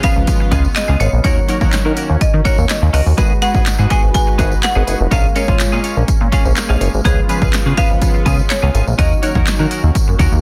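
Confident and driving, this dance-pop excerpt moves at 124 BPM in a straight 4/4, with a woody, percussive marimba carrying the melody through delay over warm analog keys and a filtered supersaw swell that holds airy sustained chords in the background, both keys and swell pumping with the sidechain. A clean, twangy twelve-string electric guitar plays a riff with subtle chorus, while a glossy, nasal chorused synth bass enters at 0.2 seconds to join an up-front house drum kit of punchy kick, snare, hi-hat and handclaps, plus a jingly, close tambourine. The chords cycle through C#7, D#m7, G#m7 and A#m7 in a dense, heavily limited modern master with little reverb.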